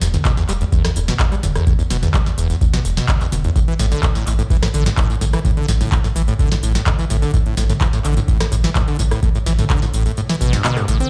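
Acid house at 127 BPM in a straight 4/4, hypnotic and raw, heard as a short cut from a drop in a longer piece. A squelchy, resonant sawtooth acid bass with filter sweeps and analog chorus runs the riff across a range of E1 to C4 over a round sine sub bass held between E1 and A1, both pumping against the sidechain, while a booming analog drum machine with tape-warm tone, a tonal snare, metallic hats, handclaps, rim click, tambourine and toms sits in a short room. A deep electronic kick drives the groove from 0.3 s and drops out at 10.2 s, and the whole mix sounds as if played through a big sound system in a bare room, with a large studio reverb.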